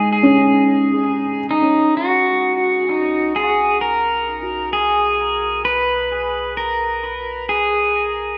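Drenched in a long plate reverb and heavy echo, this luminous, serene ambient excerpt drifts at 65 BPM in 4/4, moving from a G#sus4 chord to B5. Up front, an electric pedal steel guitar carries the melody with clean, compressed slide lines, fingerpicked notes and volume swells through analog delay, while a felt-muted upright piano plays soft, boxy arpeggios with audible action noise. From 2.0 s, a round, deep analog bass fades in, holding a sustained low B in the background.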